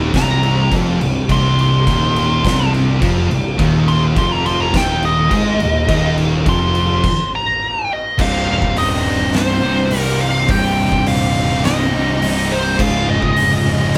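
A dark, up-front fuzz lead guitar with wah solos high over this hypnotic, brooding stoner and doom metal excerpt at 104 BPM in C Phrygian, before a stop from 7.0 to 8.2 seconds gives way to a new section moving from Cm toward Db. Beneath it, two thick fuzz guitars (one very quiet) and a bright, double-tracked high-gain guitar grind out the riff, with a growly overdriven fuzz bass sitting in the background. An oversized, low-tuned acoustic kit with a boomy kick, fat snare and dark cymbals pumps in a bright stone room, while a very quiet tonewheel organ with key click and vibrato holds sustained chords, the whole band playing live in one large reverberant room.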